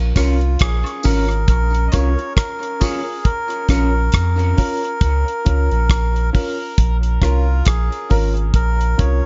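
A slow, heavy dub reggae groove at 68 BPM, swung on the sixteenths, rests on a damped 70s drum kit up front with a tight kick, hi-hat and rim click, while a deep, round sub bass holds the low end on Bb minor. A reedy, breathy melodica carries the melody through dub echo, a grand piano with long sustain adds echoed stabs, and a dark, clean electric guitar sits in the background. Echoed tambourine and woodblock fill out the spacious small-room mix until they and the guitar drop away at 3.9 s, leaving this fragment of a longer piece to the drums, bass, melodica and piano.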